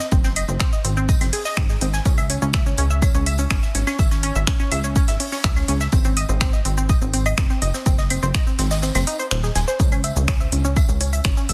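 A punchy, tape-warm electronic kick sits up front in this cinematic, melancholic melodic techno excerpt, dropping out between 8.8 and 9.8 seconds before returning. Alongside it, a plucky analog bass with a wave-folded, funky edge and fast-attack filter pluck carries the low end with sidechain pumping, while a tight, driving sequenced synth spins detuned arpeggios through chorus and tape echo, its tone mellow and also pumped by the sidechain. A layered house drum kit adds claves, finger snaps, shaker and metallic hi-hats, with soft clipping on the snare. Farther back, a huge arena drum kit contributes hi-hat, a fat snare and tambourine in a hall-like, pumping room, all thinned by high-pass filtering. The harmony moves between G# and C# minor, and the dry mix is dense and heavily limited, with lossy compression artefacts audible in the modern master.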